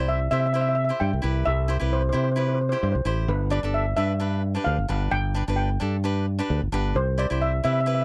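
Calypso with a festive, carefree mood at 131 BPM in C major, lightly swung, moving from C to G and back to C over this 8-second excerpt cut from a longer piece. A shimmering, metallic lead steel pan played with hard rubber sticks carries the melody, while a crisp, picked acoustic cavaquinho accompanies and a growly, up-front fingered electric bass anchors the low end. The sound is dry and close, like a 1970s studio recording.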